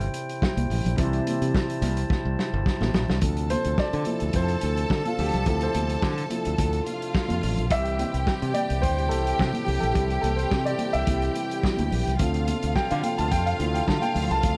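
This disco excerpt opens at 107 BPM in D minor with a vintage drum kit, a baby grand piano, a tonewheel organ and a bright fingered electric bass all sounding together, and damped, high-tuned congas slip in behind them at 0.4 seconds. The drums sit up front with a muffled, lo-fi small-room character, a tight kick and a medium-tuned snare, while the bass is direct and up front, anchoring the low end from G1 to D3. The organ holds clean sustained chords with audible key click through a stopped rotary speaker, as the mood settles into something danceable and sultry over a C chord. After a drum fill from 2.1 seconds, the piano takes a solo at 3.2 seconds, its natural tone and short sustain ringing over Dm7 and C chords, just as a lush studio string section enters with a bowed, vibrato-rich second line from F4 to A5. Light reverb gives the parts a touch of space, and the congas stay in the background with a thick-skinned, live-room feel until the cut at 14.6 seconds.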